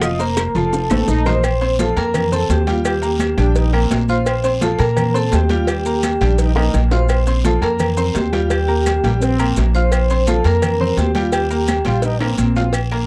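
A straight 4/4 pulse at 170 BPM drives this joyful, danceable salsa, with a metallic vibraphone melody with fast motor vibrato over a bright, slightly detuned upright piano with audible action noise and a dark, thumpy pizzicato upright bass up front, while a raspy guiro scrapes along, ringing high-tuned congas, tight bongos and cowbell, woody claves, grainy maracas and saturated timbales and agogo bells sit in the background, a punchy, tight trombone section adds a second line from 0.9 seconds, and drum fills land at 6.6 and 12.0 seconds in a dry, close 1970s-style studio sound.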